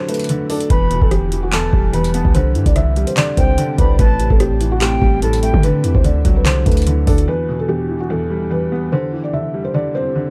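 Dark and hard-hitting, this half-time trap and hip hop excerpt sits at 146 BPM in E minor, moving through Dadd9, Em, Cadd9 and Am7 with a dry, close production. A felt-muted upright piano carries the melody with thick, intimate softness, audible action noise and a touch of delay, while a boxy, worn baby grand plays the accompaniment up front, and a very quiet, ethereal pad of detuned sawtooth and triangle tones holds sustained chords with ensemble chorus and its own built-in reverb. During a brief break over the opening chord, a booming analog drum machine with deep kick, metallic hats, handclaps and rim clicks enters at 0.1 seconds, overdriven and re-recorded in a small room, joined at 0.7 seconds by a punchy, heavy 808-style bass with a fast attack, decaying sine tone and noise layer. A distant, airy metal jazz flute adds an expressive second line with vibrato and tongued notes, echoed by delay, until 5.6 seconds. 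At 7.3 seconds the drums and bass stop, leaving the two pianos and the pad to carry the final section to the end.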